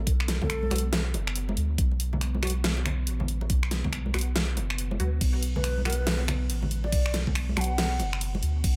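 Dark and meditative, this deep dubstep excerpt moves at 140 BPM in a swung half-time feel in B minor, with a knocking electronic kick, plus an overdriven drum kit of huge snare, bright hats, ride and finger snaps sitting up front alongside a round, soft sub bass, while ringing, close congas add hard-handed acoustic texture. Behind them a moody, warbling ambient pad holds a sustained chord with chorus and reverb, and a muted, nasal chord stab with phaser and dub echo flickers in the background. A breathy, close-miked ney with expressive vibrato appears briefly at 0.4 seconds and returns from 5.6 to 8.2 seconds, trailing dub echo over the groove.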